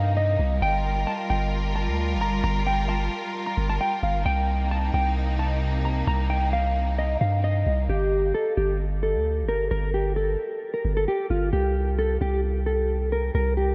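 Soaked in a huge, dreamy ambient reverb, this eerie yet hard-hitting half-time trap excerpt is anchored by a deep, up-front 808-style bass with a sine-like tone, fast attack and long decay. A dark, clean, fingered electric guitar carries the melody up front, colored by analog chorus, a low-pass filter and tape echo. A distant, smooth symphonic string section holds rich bowed chords with light vibrato until 7.9 seconds, when the harmony shifts from minor seventh chords to bare power chords.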